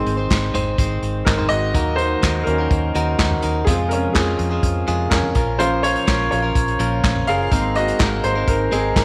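A light reverb and small-room ambience frame this driving, earnest piano-driven pop excerpt at 125 BPM in 4/4, where a clear, open concert grand with deep bass sits up front and carries a featured solo line over chords moving from Ab through Ebm, Fm and Bbm to Abadd9. A bright, clean, direct-recorded electric guitar plays a compressed, scooped picked riff, while a vintage foam-muted fingered bass adds a round, punchy low end. From 0.1 seconds an acoustic drum kit, dark and smooth and played with bundle sticks, brings a punchy kick, medium-tuned snare, hi-hat, toms and handclaps.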